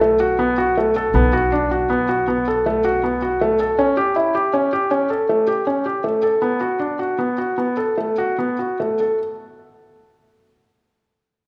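Set in a straight 7/4 at 158 BPM, this pensive, hypnotic piece of contemporary chamber music moves in an uneven meter before slowing down from 6.0 to 9.2 seconds. A felt-muted upright piano carries the whole clip with arpeggios between A3 and A4, its soft, mellow, intimate tone sitting up front with a thin felt character. An acoustic upright bass plays pizzicato on a low B1 beneath it, woody and warm with steel strings, until it stops at 3.7 seconds. In B minor and tuned to A4 = 439 Hz, the harmony moves from a B7 lacking its third to A7 and back again. A moderate concert hall reverb with a 2.2 second decay gives the pair a sense of space, and the passage is cut from a longer piece.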